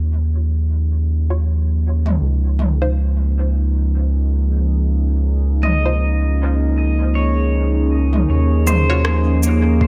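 Ambient dub at 79 BPM in 4/4 with a swung sixteenth-note feel, meditative and hazy, cut from a longer piece. A round, deep analog bass sits up front from the start, its dark tone thickened by tube saturation, while a warbling, nostalgic pad of detuned sustained chords fades in with a slow attack, carrying chorus, phaser and a lo-fi 12-bit sampler grit under a filter sweep. Muted, detuned chord stabs with a filter pluck arrive at 1.3 seconds, phased and trailed by dub echo as their own filter sweeps through the opening section, and the harmony moves from Eb7sus2 to Dbadd9 before returning to Eb7sus2. An overdriven electronic kit of rim clicks, shaker and toms, re-recorded in a small room, joins at 2.1 seconds with dub echo, and a clean electric pedal steel enters at 5.6 seconds with fingerpicked, compressed slide arpeggios and volume swells fed into echo. A soft, overdriven electronic kick lands up front at the very end, in a dry mix with little reverb.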